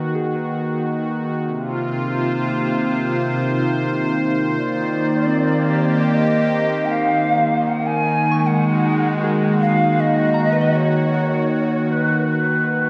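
Ambient music, luminous and warm, in which a smooth, detuned sawtooth pad with chorus and tremolo holds sustained chords up front over an evolving, warbling analog drone, while a pure FM synth bell fades in with gentle arpeggios in the background and an airy, hollow shakuhachi with chiff and vibrato carries the melody through tape echo from 4.6 seconds, the whole echo-heavy excerpt set in a wet spring reverb.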